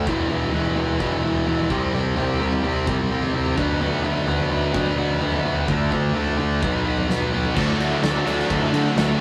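A compressed, up-front fuzz guitar leads this brief cut from a longer quiet-loud alternative rock piece, picking out a brooding, cathartic riff that reaches from E2 to F#4. Beside it, a heavy high-gain guitar plays its own riff across a similar range with a bright, searing edge. A growly fuzz bass, both direct and amped with overdrive, digs down to E1, while a loose indie drum kit in a pumping room pushes a straight 4/4 with a punchy kick, medium-tuned snare, toms and dark crash and ride cymbals. The chords move from E5 through C5, Bm/D, D5 and B5 before settling on D as the music shifts into a new section at 7.6 seconds. Just before that, at 7.5 seconds, a double-tracked high-gain guitar slips in behind the others, all of it captured with light reverb in a rough rehearsal-room sound.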